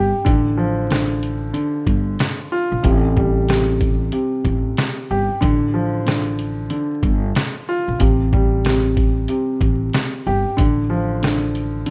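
A swung sixteenth-note groove in 4/4 drives this gritty, dark boom-bap hip-hop cut, taken from a longer piece. A sampler-style drum kit enters at 0.3 s with a thumpy kick, a medium-tuned snare, rim clicks and hi-hat; it sounds compressed, pitched down and muffled, as if re-recorded in a small room. An acoustic upright bass plays pizzicato on gut strings, woody and low, beneath a vintage grand piano whose smooth, short-sustained chords alternate between F6/A and Am7. The piano is coloured by cassette tape and by high-pass and low-pass filtering. All three parts sit up front in a rough home-demo mix, wrapped in studio reverb and vinyl crackle.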